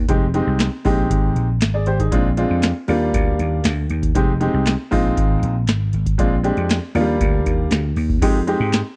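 A dry, close recording in a 1970s studio style with a touch of digital ambience frames this short cut from a longer early-eighties boogie funk piece, funky and slick at 118 BPM in a straight 4/4, set in F dorian. A growly, punchy vintage slap bass opens at 0.0 s, sitting up front with an amped electric tone as it moves between F1 and Ab2. At 0.1 s a booming analog drum machine joins with a deep kick, a tonal snare, metallic hi-hats, handclaps and a crash cymbal, the snare, clap and hats carrying a short room sound. A clear grand piano enters alongside it, boxy and short in sustain, playing between F3 and D5. The harmony cycles from Fm7 through Bb7 to Ebmaj9 and back to Fm7, with all three parts held close and forward in the mix until the cut ends near 8.9 s.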